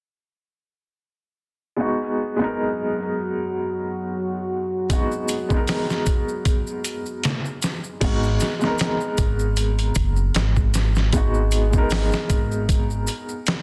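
A slow 77 BPM trip hop groove in 4/4 with a lazy 16th-note swing settles in at 4.9 seconds, when a gritty, pitched-down sampler-style kit with a thumpy kick and medium-tuned snare arrives alongside bright, close maracas. Before that, from 1.8 seconds, a soft, felt-muted upright piano with audible action noise, tremolo and tape echo sketches a brooding G# minor seventh, briefly shadowed by a deep, detuned, chorused pad. At 8.0 seconds a woody, pizzicato upright bass with tube saturation steps up front, giving this dense, heavily limited cinematic fragment a dark, thumping floor.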